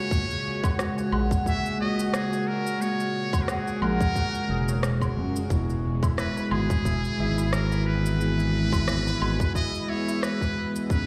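Organic downtempo at 89 BPM with a gentle 16th-note swing, peaceful and warm, moving from F#add9 to E in this short excerpt from a longer piece. A breathy, buzzy trumpet in metal mute carries the jazz-style melody with scooped notes and light vibrato over soft, dark felt-like synth keys with chorus and pumping, a nasal bowed-like drone sitting in the background, and mellow, shimmering santur arpeggios, the trumpet, keys and santur each trailed by digital delay. A tight, tape-toned electronic kick sits up front with shaker, woodblock and rim click, while a smooth gliding sawtooth bass with tube saturation enters at 1.1 seconds and drops out at 9.4 seconds, all played through a big sound system in a bare room and bathed in large studio reverb.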